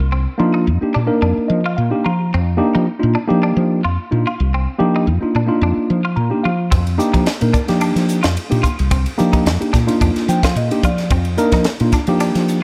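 Slick and driving, this electric jazz fusion excerpt rides a light 16th-note swing over an F13sus4 chord, with a worn, slightly out-of-tune tine electric piano accompanying up front and slipping in brief fills, while a dark, round fretless bass with subtle chorus anchors the low end. A bright, twangy clean guitar adds compressed, picked stabs through analog chorus, sitting lower in the mix. The crisp drum kit joins at 6.7 s on hi-hat, kick, ride and a high-tuned snare, its tight, gritty, saturated small-room sound framed by light studio reverb.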